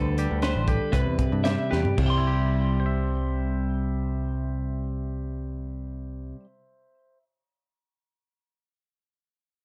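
A straight 4/4 pulse at 110 BPM slows over the opening two seconds of this short cut from a longer math rock and midwest emo piece in C major, with a crisp fusion drum kit in a small, pumping room, its snare tuned high and kick punchy, playing only until 2.1 s after a fill at 1.7 s. Up front, a clean, twangy electric guitar carries the accompaniment over a direct, punchy picked electric bass, while a bright twelve-string electric guitar spins compressed arpeggios through digital delay, moving from D7sus4 to Cmaj7 before settling on C. The playful, wistful mood sits in a dark, warm production with light reverb.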